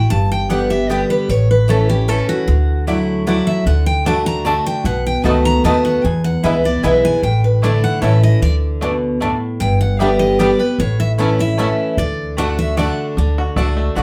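Virtuosic and joyful, this bluegrass excerpt in 3/4 opens with a bright jumbo steel-string guitar soloing the melody over a full-bodied, up-front dreadnought guitar accompaniment and a dark, thumpy pizzicato upright bass, while a warm double-strung mandolin adds stabs from 0.5 seconds and a twangy, percussive fingerpicked banjo joins on melody at 4.1 seconds, the group heard from further back in a wet studio room.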